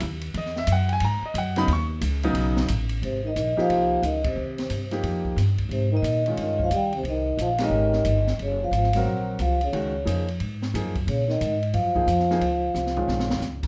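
A swung 4/4 pulse from woody, up-front pizzicato upright bass and an open jazz kit with dark cymbals and a boomy kick drives this searching, spiritual modal jazz excerpt, with clear concert grand piano accompanying from 0.4 seconds before ringing vibraphone takes the melody at 3.0 seconds over a veiled, breathy bucket-muted trombone second line, band accents punctuating the music and a drum fill closing it at 12.7 seconds, all in a moderate club reverb.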